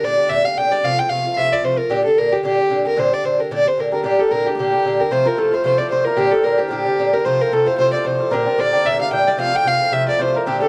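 Driving and wild, this fast Celtic folk excerpt in G dorian runs at 224 BPM with a light swing, a dark, woody fiddle carrying the melody up front with light vibrato and a smooth top over a mellow, metallic Irish bouzouki picking out chords on its double strings, alternating between Gm and F. At 3.9 seconds a hammered cimbalom enters with a shimmering, ringing second line in the same register as the fiddle. The sound is dry and close, like a 1970s studio recording.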